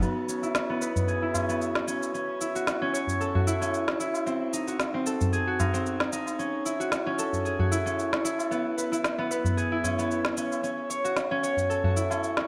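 Hypnotic and meditative, this organic downtempo passage, cut from a longer piece, rides a gently swung 4/4 groove as an up-front, fingerpicked concert harp rings out arpeggios through a low-pass filter, delay and shimmer reverb over C#m7, A6, G#7b9 and F#m9, joined by a produced electronic cabasa and woody snare kit, a high-tuned acoustic tabla entering at 0.4 seconds, and a very quiet, dark, metallic bronze singing bowl struck with a wooden striker, all set in a wet recital hall.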